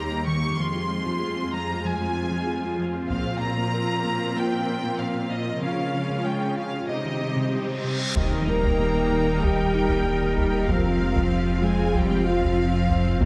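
This excerpt from a hybrid orchestral and electronic film score opens with a symphonic violin section carrying a smooth, vibrato-rich melody in F minor over an intense viola section, a lush cello bass, an airy, breathy pad with chorus and a glassy, crystalline wavetable pluck tracing arpeggios in the background through chorus and digital delay. The mood is vast and brooding at a straight 95 BPM in 4/4, with the harmony moving through Eb, Fm, Bbsus2, Db and Cm. Taiko drums struck with hard sticks sound briefly at 3.1 seconds, close and dry in the background. An electronic reverse cymbal rises from 7.6 seconds into an impact at 8.2 seconds, where the taiko return and the texture thickens: a distant studio violin section adds a second line, mellow French horns and a dark, very quiet trombone section hold sustained chords, and a very quiet double bass section joins a deep, round sub bass beneath the cellos. 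The whole ensemble sits in a wet concert hall reverb, giving the orchestral sections a spacious, cinematic depth.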